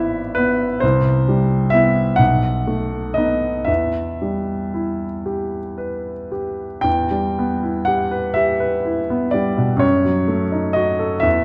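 A romantic classical nocturne for solo grand piano, this yearning, wistful excerpt moves in a flexible, rubato 6/8 across a chord sequence of E/G#, Cmaj7, B7 and Em, with a D#dim/F# arriving at 9.8 seconds. The piano sounds smooth, vintage and up front, spanning from G#1 to G5 and playing alone for the full 11.4 seconds. It sits in a wet scoring-stage reverb within a dark, warm production, and a new passage begins at 6.9 seconds.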